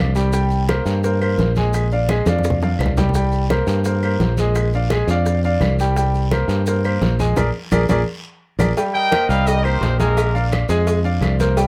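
A clear, polished concert grand piano sits up front with an intimate presence, its audible action noise, deep bass and long sustain carrying the accompaniment through this driving, passionate salsa fragment cut from a longer piece. Beneath it, a dark, round fingered electric bass plays directly and prominently, moving between C5 and Bb7 chords. In the background, low-tuned congas struck with hard hands sound bright and dry, while tight, high-tuned bongos and cowbell, woody distant claves and grainy, saturated maracas fill out the groove alongside a raspy guiro. A drum fill arrives around 2.3 seconds, and a band accent from 7.4 seconds sets up a new section at 8.8 seconds on a Cm7 chord. There a tight trumpet section with light vibrato enters up front at 8.9 seconds, delivering a brief pop-style melodic statement before the clip ends under light reverb.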